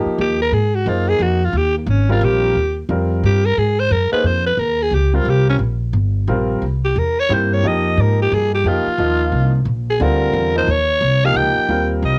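Jazz waltz in 3/4 at 177 BPM with a swung, sophisticated yet relaxed feel, cut from a longer piece and centred on Eb mixolydian with chords such as Ebadd9, Ab9, C7 and Fm7. A growling alto saxophone takes the solo from 0.2 seconds, breathy and raspy with vibrato and subtone, carrying a gritty cassette-tape colour, while a woody, pizzicato upright bass sits up front and an intimate, natural concert grand piano with audible action noise comps beneath. The home cassette recording has light reverb.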